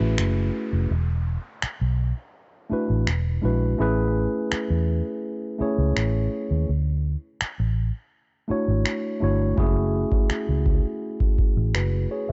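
Contemporary R&B at 83 BPM in A major, tender and dreamy, where a mellow tine electric piano drifts through F#m7, E7sus4, Amaj7 and Dmaj7 over a round, foam-muted vintage electric bass and a booming, overdriven analog drum machine of deep kick and finger snaps, while a downlifter sweeps through the opening 3.8 seconds, all set in a dark digital ambience.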